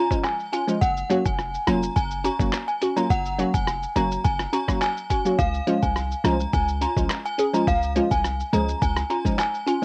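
A lo-fi sampler-style drum kit sets a straight 4/4 dancehall groove at 105 BPM from 0.1 s, its thumpy, muffled, pitched-down kick sitting up front among handclaps, hi-hat, rim click and shaker. In Db major, a glassy, crystalline wavetable pluck treated with chorus and a filter sweep carries the accompaniment beneath a ringing, inharmonic FM synth chime melody dressed in ensemble chorus and analog delay, while a deep, boomy 808-style bass enters at 0.8 s. The summery, bouncy excerpt sits in light reverb with the grain of a home cassette recording.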